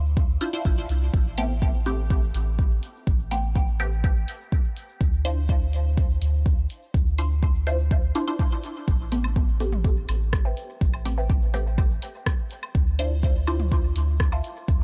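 Dub techno at 124 BPM in A minor, this deep, hypnotic excerpt rides a round, soft sub bass pumping under sidechain and an up-front electronic kick, while a grainy egg shaker and a small-room deep house kit of hi-hat and rim click fill out the groove as the chords move between Dm9 and Am9. A muted, resonant chord stab, detuned and wave-folded, drifts through phaser and dub echo. Electronic woodblock and toms arrive at 9.2 seconds, and a warbling, lo-fi pluck with chorus and echo joins at 10.4 seconds, all set in a digital ambience.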